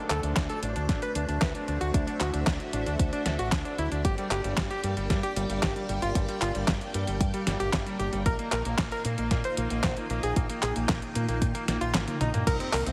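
Italo disco at 114 BPM, danceable and bittersweet, where a bright, clangy electric grand piano carries the melody with delay over lush string-machine chords treated with phaser and ensemble chorus, a round, punchy fingered bass with envelope filter and tube saturation, a fat-snared 12-bit drum machine with handclaps, hi-hat, toms and crash, and a layered electronic kick that drops out at 11.9 seconds ahead of a drum fill at 12.1 seconds, all moving through D7, Gm and Bbsus4 in a plate-reverb ambience with a heavily compressed radio sound.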